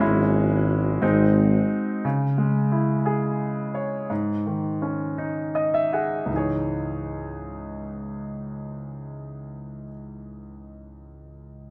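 A clear concert grand piano, up front with deep bass and an open tone, carries this dramatic, aching pop ballad in C# minor, moving in a slow 6/8 at about 51-60 BPM through C#m/G#, G#, G#sus4 and a closing C#madd9. A mellow tuba sounds a lone G#1 on the bass until 1.7 s, smooth on top, with light vibrato, scooped notes and a jazz inflection. The tempo slows from 2.0 s, the piano adds a fill at 5.2 s, and a moderate recital hall reverb surrounds this excerpt cut from a longer piece.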